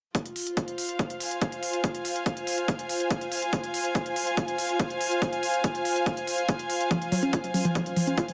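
Relentless and intense, this driving peak-time techno excerpt runs at 142 BPM in F minor, sitting on a single Fm chord as a punchy, up-front electronic kick and smooth, sidechain-pumped hi-hats, both tape-warm and re-recorded in a small room, carry the straight 4/4 pulse from the start. An intimate chamber string section bowed sul tasto with light vibrato pumps against the beat throughout, spanning F4 to Ab5. At 6.9 seconds a dark, warbling, lo-fi pluck of detuned square and sawtooth tones enters with chorus and dub echo, all inside a moderate digital room reverb.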